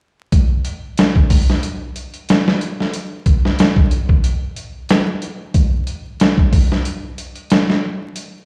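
A sampler-style trip hop drum kit of thumpy kick, medium-tuned snare and hi-hat, pitched down, gritty and compressed, sits up front from 0.3 s to 8.3 s in this smoky, brooding fragment at 92 BPM with a light 16th-note swing, framed by vinyl crackle, a moderate plate reverb and the spacious echo of a big sound system in a bare room.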